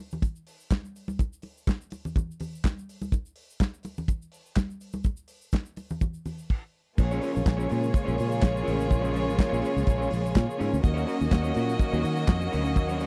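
A dry, close 1970s-style studio recording with little reverb carries this driving, danceable disco cut in Bb minor at 124 BPM, where a damped acoustic drum kit with a tight kick, medium-tuned snare, hi-hat, handclaps and dark crash cymbal sits up front beside thick-skinned congas that stop at 6.4 seconds and a grainy egg shaker in the background, and then a round, foam-muted fingered electric bass, a slightly broken-up electric guitar, a clear, earthy violin section with light vibrato and a lush background string section holding chords over Bbm7 and Ebm7 enter together at 7.0 seconds.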